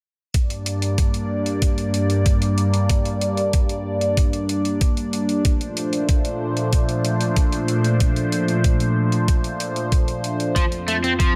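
This moody, nocturnal synthwave excerpt in G minor begins at 0.3 s with a thumpy, up-front electronic kick drum and a quieter sampler-style hi-hat, both tape-warm and touched with small-room ambience, at a straight 94 BPM in 4/4. Almost at once a bright, detuned sawtooth pad enters with a slow attack, holding sustained chords that swirl and evolve through phaser and chorus while sidechain pumping makes them breathe against the beat. The harmony rests on G minor before moving to B-flat major seventh at 5.5 s, giving the passage a hazy, after-dark glow. At 10.6 s, as the chords land on F5, a crunchy, overdriven electric guitar cuts in up front with a brief picked riff, colored by analog chorus and digital delay. A light reverb lends the whole piece a soft sense of space.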